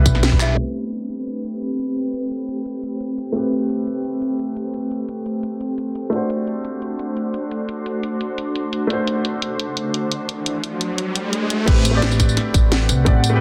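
Lush and rolling, this excerpt of liquid drum and bass moves at 173 BPM in A dorian, with a dark, worn grand piano under a filter sweep and tape echo and a glassy FM pad carrying sustained chords with chorus, tremolo and 12-bit sampler grit throughout, while a garage drum kit of cracking snare, bright hats, handclaps and tambourine runs nearly the whole way. A woody, thumpy pizzicato upright bass and a tight electronic kick appear only at the very start and return at 11.7 seconds, when the drop lands on Am9 after an electronic riser builds from 9.9 seconds. A velvety sawtooth lead slips in at 12.7 seconds, sitting in the background with chorus, vibrato and cassette-tape colour, all inside a moderate plate reverb and a dense, heavily limited master.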